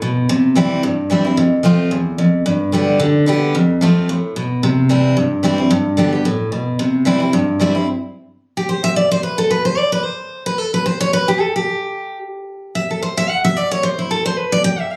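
A swung 4/4 pulse races along at 221 BPM in this joyful, rustic bluegrass fragment in C major, cut from a longer piece and carried entirely by a single picked steel-string dreadnought guitar ranging from E2 to G5. Its bright, full-bodied tone with fresh strings sits up front, cycling through C, F and G before breaking into an unaccompanied solo passage from 7.9 seconds. Captured on a phone in the room, the sound carries a moderate club-like reverb.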